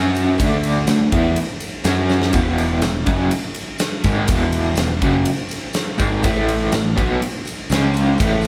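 Driving and swaggering, this classic rock excerpt moves at 123 BPM in a straight 4/4, centred on E mixolydian with chords such as D5, F#5, E, A5 and C#5. Two crunchy overdriven guitars play the riff together from the start, one sitting in the background and the other, treated with tremolo, placed up front. A picked electric bass sounds growly and punchy, played direct beneath them, while a very quiet, jingly, band-limited tambourine with a vintage character enters at 0.1 seconds. The huge arena drum kit comes in at 0.2 seconds with a punchy kick, fat snare and bright ride cymbal in a pumping hall sound, and it plays a fill at 2.1 seconds. The band was captured playing live in one room, with a moderate large studio reverb giving the whole performance a roomy, lively feel.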